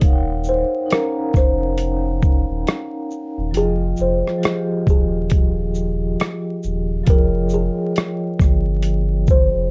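This lo-fi hip hop excerpt carries a melancholic, nostalgic mood over a swung sixteenth-note feel in 4/4. A pitched-down, compressed boom bap drum kit sits loudest and up front, with a thumpy kick, hi-hat, rim click and shaker giving it a gritty, sampler-style character. Underneath, a deep sub bass doubled at the octave holds sustained sine-and-triangle tones, while a soft-mallet vibraphone provides metallic, ringing accompaniment with a slow motor vibrato, softened by cassette tape color and a low-pass filter. From 0.5 s a kalimba carries the melody in a narrow register, its woody fingertip plucks short and band-limited. The harmony moves from Eb9 to Fm7 at 3.5 s, then settles on Fm9 at 7.1 s, all within a dark, dry production dusted with vinyl crackle.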